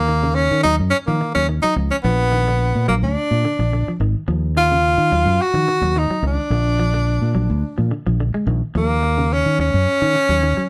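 A bright, close-miked tenor saxophone leads this intense, funky afrobeat excerpt, singing a pop-style solo melody with vibrato at 107 BPM in Eb minor, lightly swung on the sixteenths. Up front beside it, a round, punchy fingered electric bass with a direct, amped tone drives the groove, while a clean, picked semi-hollow guitar sits in the background, adding hollow-body arpeggios over a progression that moves between Ebm9 and Bb chords. Light reverb places the trio in a single room, giving the short passage the feel of a band playing live.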